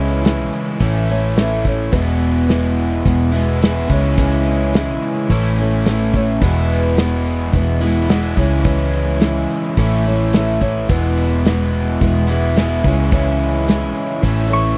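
A jangly, hopeful slice of folk rock and heartland rock, moving at a steady, straight four-beat pace through a recurring cycle of C#m, A and E. A picked twelve-string acoustic guitar shimmers with its octave-doubled strings, while a bright, crunchy overdriven electric guitar, double-tracked, carries the riff alongside it from the first second. Underneath, a hollow-body short-scale electric bass sits up front with a dark, round, amped tone, and a natural country drum kit enters at 0.2 seconds with hi-hat, a punchy kick and a medium-tuned snare in a smooth studio-room sound. Just before the cut at 14.8 seconds, a mandolin slips in on a single high C#6 with its double strings giving a rounded voice. The whole has a dry, close 1970s-style studio feel with only a light touch of reverb.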